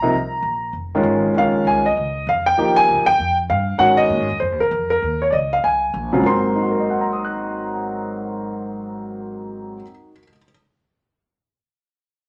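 Set in a moderate club reverb, this short fragment of a longer jazz piano trio piece has a relaxed, warm mood, swinging at 196 BPM in 4/4 in Ab mixolydian. An intimate, up-front concert grand piano carries the melody, its deep bass and audible action noise close at hand, while a woody pizzicato upright bass plays the bass line beneath it. The chords move from Bbsus2 through Bbm7 and Ebadd9 to Ab9, and the bass stops at 9.8 seconds, leaving the piano alone until 10.5 seconds.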